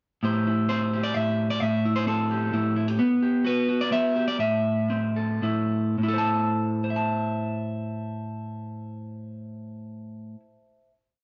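A lone electric guitar, dark in tone and just slightly broken-up, carries this short, complete folk piece from 0.2 to 11.0 seconds, set up front and touched by spring reverb. Its picked, song-like melody is built from motifs over an alternating-thumb fingerstyle pattern, ranging from A2 to A5 in A dorian. The mood is reflective and haunting, in 3/4 with a straight feel, and the tempo sits between 105 and 132 BPM before slowing from 3.0 to 6.0 seconds. The harmony moves from Am7 to Gmaj7/B and settles on Am, with a final chord ringing from 6.0 to 9.4 seconds. A moderate studio reverb surrounds the playing, and the sound is soft-edged, with its highs rolled off.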